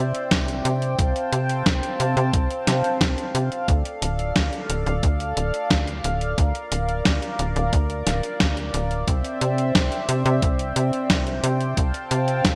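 A straight 4/4 groove drives this cinematic, nocturnal synthwave excerpt, with a thumpy sampler-style electronic kick and a clean 12-bit drum machine's hi-hat and medium-tuned snare, both re-recorded in a small room, the snare up front and washed in gated reverb. Underneath, a tight, punchy sequencer bass with a nasal sawtooth-and-square filter pluck and tube saturation pumps against the sidechain, while a shimmering, retro pulse-width pad with chorus and a sub octave holds soft-attack chords from Cadd9 through Dm and Bb/D. Light digital ambience frames the bright 1980s-style production.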